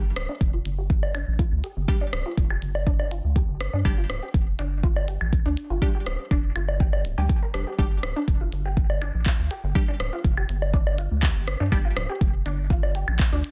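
Minimal techno with a clinical, quirky mood, this short cut from a longer piece rides a straight 4/4 pulse. A deep electronic kick sits up front beside a minimal click drum kit of clicky hi-hats and handclaps, both re-recorded in a small room, while a tape-toned layer of electronic rim clicks, woodblock and claves is re-recorded in a large room, with soft clipping on the snare. Underneath, a rubbery, hollow square-wave bass bounces through a dark, resonant low register with a moving notch and sidechain pumping. A juicy, squelchy blip pluck carries the riff, drenched in phaser, lush chorus, tape echo and pumping, as a filter sweep runs across the synth arpeggio from start to finish. From 1.9 to 11.8 seconds, crisp, detuned wavetable chord stabs with decaying tails and tape echo join in, all set in a digital ambience with a dense, heavily limited modern master.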